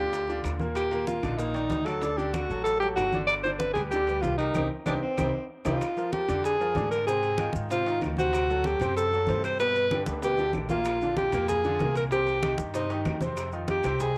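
A home cassette recording with moderate spring reverb and studio ambience frames this fiery, danceable salsa excerpt in C minor, moving at a straight 190 BPM in 4/4. An up-front alto saxophone carries the melody with pop-style vibrato and a bright tone, over a brilliant, polished grand piano with deep bass and short sustain, and a growly, thumpy pizzicato upright bass. Close, dry congas, grainy maracas and faint tight bongos, ringing timbales and woody claves fill the background. A band accent runs from 4.6 to 5.8 seconds, and drum fills arrive at 4.9 and 9.9 seconds, the first marking the turn into the second section.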